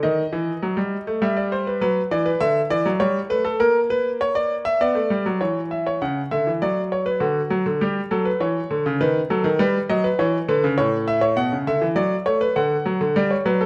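A lone baby grand piano opens this short cut from a longer classical work, a baroque-style two-part invention with a driving, serious character. The tempo sits at 101 BPM in a straight 3/4, and the instrument is tuned slightly high, with A4 at 444 Hz. Played up front and close, the piano sounds clear and intimate, with audible action noise and a long, natural sustain, spanning A2 to F#5. The harmony moves through minor and diminished colors such as D#dim, Bm and C#madd11, with a new section beginning at 5.4 seconds that travels through Gmaj7/D, B7/D# and A before settling on Bm/D. A moderate recital hall reverb gives the detailed close sound a sense of space across the roughly 13.7 seconds.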